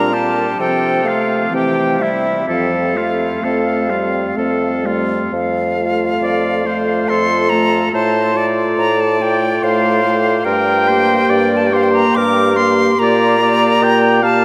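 Serene and lyrical, this slow romantic movement for wind quintet unfolds in F major at 61-74 BPM in a rubato 3/4, a brief passage cut from a longer piece. An airy silver concert flute carries the melody up front with vibrato and a soft attack, while a clear oboe with light vibrato sings the second line, also up front. Beneath them, a French horn and a warm clarinet with soft attack fill in the accompaniment, and a mellow, smooth-topped bassoon anchors the bass. All five players sound together from the start through 14.4 seconds, moving from Gm/Bb through F/C and C to F, then later to F/A and Gm before returning to Gm/Bb. The whole ensemble sits in a vast, echoing cathedral space whose long, wet reverb lets each phrase linger and bloom.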